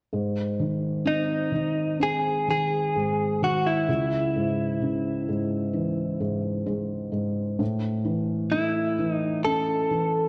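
Longing and emotional, this pop fragment opens on a dark, mellow felt-muted upright piano with thick felt and audible action noise playing intimate accompaniment through G#, C#m and A, joined at 1.1 seconds by an up-front, clean, compressed electric guitar recorded direct and picked as the melody, all set in a lush hall reverb and a worn, warbling cassette-tape sound with drifting pitch.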